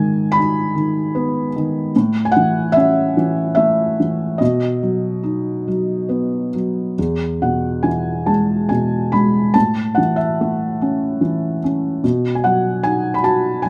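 A felt-muted upright piano plays alone from the first moment, its mellow, boxy tone sitting close and intimate with the soft clatter of the action clearly audible. This is a tender, peaceful classical piece in three-time, played with a lyrical, rubato feel and uneven beats, spanning the instrument's low register up to the upper middle. Light reverb adds a little air, and at 7.0 seconds the passage moves into a new section that carries on until this fragment of a longer work ends at 13.7 seconds.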